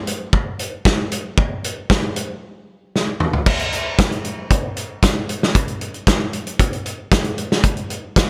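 Restless and bittersweet, this short rock excerpt at 115 BPM in straight 4/4 features a loose indie acoustic drum kit of kick, snare, hi-hat, toms and crash cymbal, its tight kick, medium-tuned snare and dark cymbals sitting in a distant, roomy studio space with light reverb, reaching a break at 2.4 seconds that leads into a drum fill at 2.9 seconds before a new section begins at 3.5 seconds.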